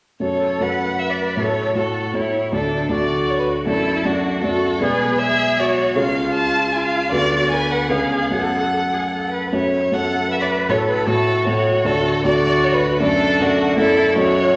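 Quick classical-period piano trio movement in F# minor at 156 BPM in 3/4, played with rubato and tuned to A4 = 437 Hz; the mood is dramatic and restless, and this passage is cut from a longer piece. An expressive violin with a warm tone, vibrato and portamento carries the melody up front, while a rich cello with the same soft-attacked, sliding vibrato sings a second line, and a dark, mellow baby grand piano with long sustain supplies the accompaniment. All three play together throughout, over a harmony that moves from F#m through D and C#7 before the opening material returns at 9.5 s, all set in the wet reverb of a scoring stage.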